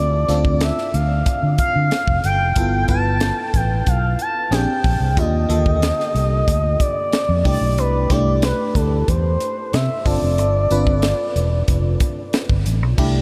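A straight 4/4 groove at 92 BPM drives this slick, bittersweet slice of polished 1980s jazz-funk pop, with a crisp fusion drum kit entering at 0.3 seconds, its high-tuned snare and punchy kick up front amid a pumping small-room sound, while a dark, round fingered electric bass anchors the low end. Above them, an FM electric piano adds glassy, bell-like chords treated with phaser and subtle chorus, moving through Dm7, G13, Bb13, Ebmaj9, C69 and G7sus4. A smooth sawtooth lead carries the melody with soft-attack sustained notes, vibrato and portamento, ranging from A4 to A5, all set in a dreamy mix soaked in a huge ambient reverb of about 4.7 seconds.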